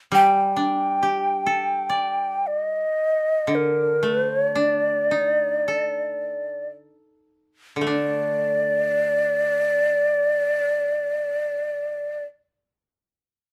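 In free time, this calm, austere Japanese chamber piece slows gradually through its first 7.9 seconds before moving into a second section that runs to the close. A mellow, airy bamboo shakuhachi carries the melody up front, its end-blown tone shaped by tongued notes and vibrato within a narrow upper register. Beneath it, a koto plucked with fingerpicks supplies accompaniment at a lower level, its bright, woody sound spanning a broader range from low to middle. The koto itself sounds dry, while a moderate studio reverb gives the room a short, modest ambience. Both instruments play together from start to finish of this fragment, which is cut from a longer piece.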